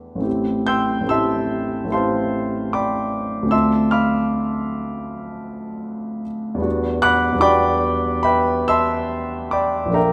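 Classical impressionist solo piano, this short excerpt from a longer piece carries a nocturnal, hazy mood at an unhurried, rubato pace in 4/4. A single grand piano plays throughout, from 0.0 to 10.1 seconds, ranging from deep bass up into the high treble. Its tone is intimate and natural, placed up front, with long sustain and audible action noise that brings the listener close to the instrument. The harmony drifts through Am7, Dm7 and Em9, the chords arriving at 0.3, 3.5 and 6.6 seconds. A wet recital hall reverb surrounds the piano, lending the sound a soft, spacious glow.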